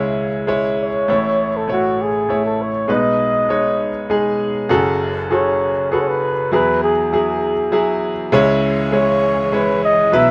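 This acoustic folk-pop ballad moves at 99 BPM in a straight 3/4, with a heartfelt, intimate mood, and it is cut from a longer piece. A mellow, breathy flugelhorn carries the melody in a jazz-tinged solo voice with light vibrato, ranging from F#4 to E5. Beside it, an up-front grand piano supplies the accompaniment, its brilliant tone and long sustain paired with audible action noise that makes it feel present and intimate. At 8.3 seconds a bowed studio string section enters in the background, adding lush, focused sustained chords with its own vibrato. The harmony opens on C#m, moves through A and B6, then shifts to F#madd9 and Eadd9 in the second section before returning to C#m. The sound is a rough home demo mix, with light reverb and a small room ambience.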